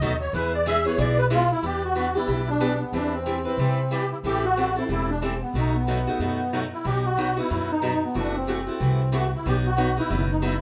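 Fiery and virtuosic, this excerpt of acoustic string swing in E minor races along at 184 BPM with a swung 4/4 feel, opening with an accordion solo over the first 1.6 seconds before moving through a passage built on Em7, Cmaj7/E, Am7 and B7 toward F#m7b5 and B. Up front, the reedy, shimmering musette accordion carries the melody with a dark, smooth tone, while the bright, boxy parlour steel-string guitar supplies picked accompaniment complete with finger squeak. The woody, thumpy pizzicato upright bass on gut strings anchors the band, which plays live together in one room with a moderate large-studio reverb.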